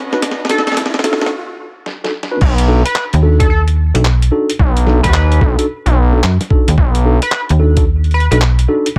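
A lightly reverberant, high-passed recording of gritty, playful glitch hop, cut from a longer piece, opens with a background electronic riser and very quiet, reedy bowed chamber strings over mellow, pumping tine electric piano stabs, compressed pitched-down boom bap drums with handclaps, hi-hat, crash and snare, and an edgy, tearing sync lead with chorus and vibrato, before the drop at 2.4 seconds brings in a thumpy electronic kick and an aggressive, saturated sawtooth synth bass, joined at 3.1 seconds by a snappy, metallic FM bass.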